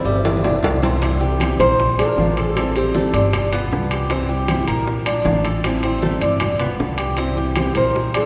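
Relaxed and danceable, this Cuban son and guajira passage opens with a drum fill as a thumb-plucked classical nylon-string guitar carries the melody until 3.5 seconds and returns at 7.8, while a small fingerpicked nylon-string guitar plays accompaniment, a metallic, double-strung Cuban tres picks arpeggios, a woody, growly pizzicato upright bass sits up front, and soft-handed bright congas, very quiet round low-tuned bongos and ringing metal-shell timbales fill out the percussion, all bathed in a long cathedral reverb.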